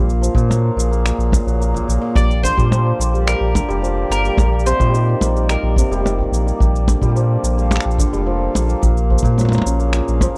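A steady, straight four-beat pulse drives this pastoral, hopeful folktronica excerpt, anchored by a punchy acoustic kick with a rolled-off top that pumps in a small room. A produced electronic layer of shaker, percussion blips and finger snaps sits just behind it. A deep, round sine sub bass with a fast attack and sustained notes sits up front, thickened by tube saturation. Hammered dulcimer arpeggios ring and shimmer through tape echo over reedy, breathing chords from a vintage, band-limited pedal harmonium that stays low in the mix. From 2.2 to 6.3 seconds a picked, double-stringed mandolin carries the melody, also treated with tape echo, as the harmony moves through Gbmaj7/Bb, Bb6, Cm7/Bb and Gm7/Bb before returning to Gbmaj7/Bb, all in a dry space with little reverb.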